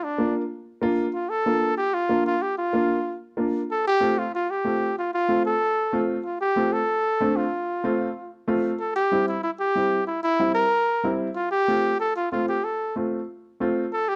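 A straight 4/4 Latin rhythm at 188 BPM drives this sunny, joyful excerpt in F major, where a warm flugelhorn plays a pop-style solo melody with vibrato up front from 0.0 seconds, while a worn, woody, slightly detuned upright piano, also up front, accompanies from 0.2 seconds through chords moving from Bb to F, C7 and back to F, captured by close, detailed microphones with light reverb.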